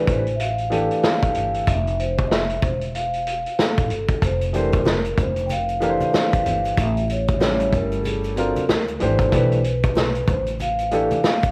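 A mellow soft-mallet vibraphone melody with analog delay opens this relaxed, cool jazz-hop excerpt in F major at 94 BPM, alongside an intimate, boxy grand piano with audible action noise and long plate-reverb sustain, plus a woody, growly pizzicato upright bass. A gritty, saturated vintage drum kit with a tight kick and rolled-off top sits up front in a swung 4/4 groove over chords moving from G13 to Fmaj7 and A7. At 4.2 seconds, ringing tube shaker and hard-hand congas enter in the background, and the whole piece carries the hazy feel of a home cassette recording with vinyl crackle and light reverb.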